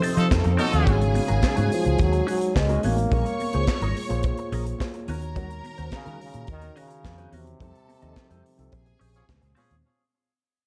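A dark, lightly reverberant production carries this danceable, glamorous disco fragment, which fades out from start to finish. A breathy, distant trombone sings the jazz-style melody over lush bowed strings, while an up-front punchy drum kit with handclaps, hi-hat, kick and snare drives it alongside a round, foam-muted fingered bass. A bright wah-treated clean guitar sits in the background with a mellow tine electric piano and very quiet, ringing high-tuned congas, and a tight horn section fires tape-echoed stabs at 0.2 and again at 9.1 seconds.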